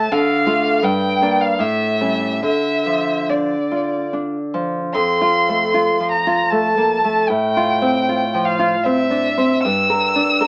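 Through a small-speaker home cassette recording with a wet studio ambience, this solemn, melancholic fragment of a romantic duo in a rubato triple metre pairs a smooth, vibrato-rich bowed violin melody, coloured by cassette tape, with a warm, fingerpicked classical nylon-string guitar accompaniment whose finger squeaks can be heard, as the harmony shifts to a brighter passage at 4.9 seconds.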